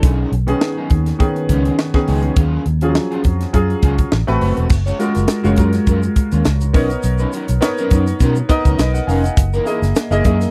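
A lightly swung sixteenth-note groove at 103 BPM in 4/4 drives this slick, nocturnal slice of polished 1980s jazz-funk pop, cut from a longer piece, where a crisp fusion drum kit with a punchy kick, a high-tuned snare and dark cymbals sits up front beside a round, foam-muted fingered bass. A concert grand piano with audible action noise and lush chorus carries the extended chords, while a slightly broken-up electric guitar plays a riff through analog chorus. A grainy tube shaker joins in the background at 4.7 s as the harmony moves to F#maj9, all captured in a dry, close studio sound.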